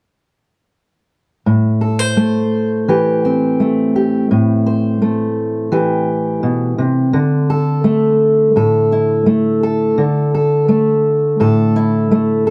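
A dusky, intimate folk recording with a light touch of reverb frames a single fingerpicked steel-string acoustic guitar, placed up front with a full, auditorium-style body. Its stirring, wistful accompaniment plays from 1.5 to 12.5 seconds, moving from Am7 to Dsus2 at 7.1 seconds in this short fragment of a longer piece.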